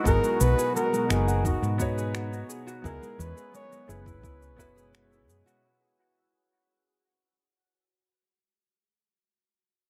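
A mellow flugelhorn carries the jazz-style solo melody up front, its vibrato and scooped notes trailing tape echo over a sunny, warm sunset chillout groove in a straight 4/4 that moves through G#m9, C#m9 and F#9sus4 as the whole passage fades out. A dark, round, punchy hollow-body electric bass sits forward beneath it, with a soft electronic kick and overdriven, layered shaker and finger snaps that carry dub echo. A warm baby grand piano comps through dub echo, while in the background a thick, detuned unison pad swirls with chorus and phaser, and a fingerpicked concert harp rings out in arpeggios with dub echo until 7.9 s, all set in light reverb within an echo-heavy mix.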